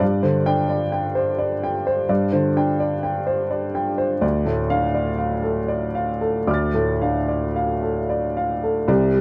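Lightly reverberant and intimate, this short excerpt of peaceful neoclassical minimalist piano features a woody, vintage-toned upright piano placed up front, playing solo with long sustain across a broad range from C2 to A6, moving in a rubato 3/4 at about 74-88 BPM from Gsus4 to Dm at 4.2 seconds, tuned to A4 = 444 Hz.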